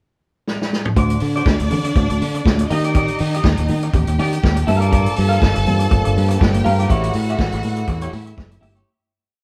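A vintage drum kit opens this short, glamorous disco piece with a fill at 0.5 s, its tight kick and medium-tuned snare sounding mid-forward and rolled-off on top. A moment later the band settles into a danceable 121 BPM groove in 4/4 with a light sixteenth-note swing: a four-on-the-floor beat with open hats on the off-beats, a growly, punchy fingered bass playing octave disco lines up front, and a clean, twangy, scooped electric guitar chopping out sixteenth-note accompaniment. A lush, clear string section bowed with vibrato carries long high lines above, while very quiet, high-tuned congas ring underneath with a slap on two and open tones on four. At 4.9 s a distant, roomy French horn section adds sustained classical-style chords as the pre-chorus moves through D7, Ebmaj7, Gm7 and A7, tuned slightly below standard pitch. The band plays together in a moderate stone room, and the piece fades out from 6.9 s.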